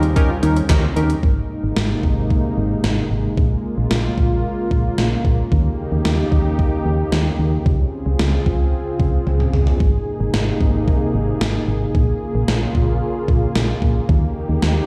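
This wistful, nostalgic synth-pop piece in Ab major at 112 BPM features a gated 80s digital drum machine, its thumpy kick, gated reverb snare, handclaps, hi-hat and toms sitting up front with a drum fill at 9.3 seconds, over a punchy, round FM bass, a smooth, warbling analog pad with chorus, and brief touches of a funky sawtooth polysynth comp and a very quiet detuned analog pluck that both stop at 1.1 seconds, all heard through a stone-room reverb as if played on a big sound system in a bare room.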